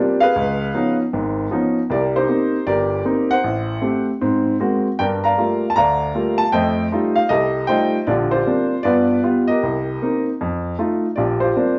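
A clear, woody upright piano plays alone and up front for the full 11.8 seconds of this sophisticated, warm solo jazz excerpt, swinging its eighth notes in 4/4 across a span from G1 to Bb5 and moving through rich chords such as Db9, Ab9, Gm9 and F9 before settling on Bb69 at 11.2 seconds, its natural tone heard live in one room with a moderate large studio reverb.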